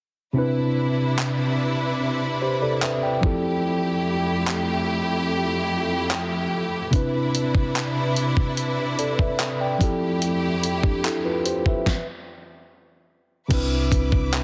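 Contemporary R&B at a dreamy, tender 73 BPM in C major, cut from a longer piece, where a mellow tine electric piano and lush, bowed strings with sidechain pumping move between Cmaj9 and Fmaj9, a gritty sampler-style drum kit with thumpy kick, fat snare, hi-hat, handclaps and crash joins at 1.2 s, and after a stop at 11.9 s a deep, round 808-style bass arrives at 13.5 s, the whole mix sitting in moderate spring reverb with a heavily compressed radio sound.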